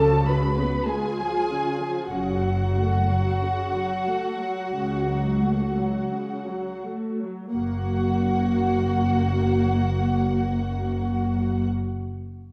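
Melancholic and solemn, this slow romantic movement for string orchestra moves at 40-54 BPM in 4/4 with a rubato feel, slowing down through its opening 7.6 seconds, and it is cut from a longer piece. Muted violins carry the melody high above a second violin line, while muted violas supply the accompaniment and cellos and double basses share the bass, all bowed con sordino with vibrato and a dark, veiled tone. The violas sit up front, the double basses sound close, and the upper violin line has a lush quality. The harmony shifts from C#7 to F# minor at 2.1 seconds, then brightens to F# major as the second section begins at 7.6 seconds. The ensemble is heard from further back in a scoring stage, wrapped in a wet reverb with a 1.5-second decay.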